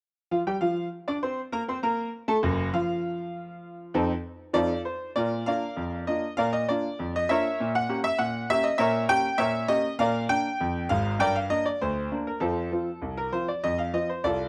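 A brilliant, worn grand piano plays alone and up front from 0.3 s to 14.5 s in this lively, playful ragtime fragment at 99 BPM in a straight 2/4, set in Bb major and tuned to A4 = 435 Hz. Its short-sustained notes span Gb1 to D6 and move from Bb and F7 harmony into a second passage at 5.2 s that passes through Bbdim7, Gm and F, all captured in a dry, close 1970s-style studio sound.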